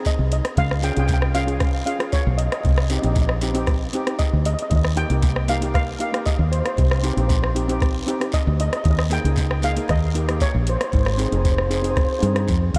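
Heard in a small, lightly reverberant room, this bouncy, carefree calypso excerpt sets a mellow lead steel pan, played with rubber sticks and touched by analog delay, above a dry, full double-seconds steel pan accompaniment, while a foam-muted fingered electric bass sits up front over a soft vintage rhythm box with deep kick, metallic hi-hat and rim click and a raspy, close guiro, all moving through Ab, Db, Cm, Eb6 and Eb7sus4 back to Ab.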